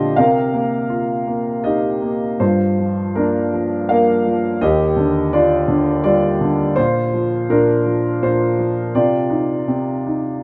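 This classical excerpt for solo piano unfolds in a lyrical, melancholic and dark mood, moving in triple metre with uneven, rubato beats. A warm concert grand carries the whole passage, its deep bass, slightly boxy tone and long sustain placed up front and spanning Eb2 to F5. The piano sits in a moderate plate reverb as the harmony drifts from Cm7 through Gm7, Ebmaj9 and Bbadd9 before settling on Cmadd9 at 8.9 seconds.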